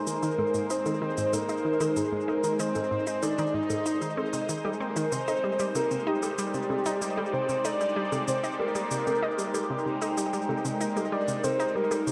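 This is an excerpt of ambient, sequencer-driven space music in a straight 4/4, cosmic and luminous in mood, moving from an Abadd9 chord to Cm7 at 5.1 seconds. A phased analog pad holds sustained chords with a slow attack, its detuned sawtooth tone swirling and evolving under phaser, chorus and shimmer reverb. A breathy, flute-like synth lead carries the melody with a soft attack and gentle vibrato, trailed by delay and shimmer. Beneath it an analog pluck plays a riff, its round, nasal, wave-folded tone sitting up front with a fast attack and short decay. In the background a resonant, bubbling texture steps through random filter changes, while overdriven electronic cabasa and bongos, re-recorded in a large room and echoed by delay, add a gritty edge. A long plate reverb bathes the whole mix in a luminous, spacious haze.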